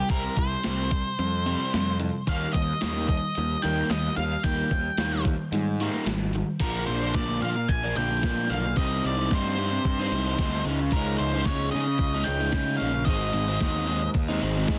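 Indie rock with a restless, bittersweet mood, where a dark, up-front octave-fuzz lead guitar carries the melody with distortion and digital delay over a double-tracked crunchy overdriven guitar riff, a growly fuzz picked electric bass and a thumpy, overdriven crisp 8-bit digital drum machine, all in a dry, dense, heavily limited mix that moves into a new section at 6.6 seconds.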